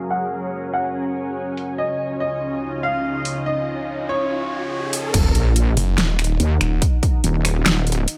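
A saturated, detuned wobble bass drives this heavy, menacing half-time dubstep excerpt, arriving with a punchy electronic kick at 5.1 seconds, when the music drops onto an Eb minor chord. The opening rests on a clear, boxy baby grand piano melody with delay, set over a lush, thick sawtooth pad with chorus and phaser and a faint, ethereal airy pad. Both pads pump against the sidechain while a filter sweep and riser build the tension. A big-room dance kit enters at 1.6 seconds with an overdriven, huge snare, metallic hats, finger snaps and crash cymbal, while a riser and sub drop lead into an impact at the drop. At 5.8 seconds a snarling, growling saw bass with a moving notch joins the wobble bass for a brief, aggressive stretch. The mix sits in light reverb and digital ambience under a low-pass filter.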